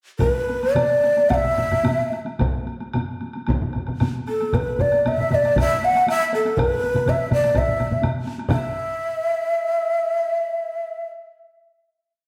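A straight 4/4 pulse drives this short, complete Japanese traditional taiko ensemble piece, speeding up from about 108 to 138 BPM as it goes, with a powerful, driving mood. Three taiko ensemble parts share the groove: one struck with heavy sticks repeats a pattern, another with heavy sticks plays close, dry taiko phrases in the background, and a third with hard sticks keeps its own repeating pattern, while a woody woodblock ticks along underneath. A solo taiko part with hard sticks adds its own phrases. Up front, a breathy, hollow, end-blown bamboo shakuhachi carries an ornamented modal melody in E suspended pentatonic, tongued with chiff and colored by vibrato. The drums stop around 8.9 seconds, and the shakuhachi rings out alone on a final note, sounding until about 11.1 seconds. The band plays live together in one space, wrapped in a stony room reverb.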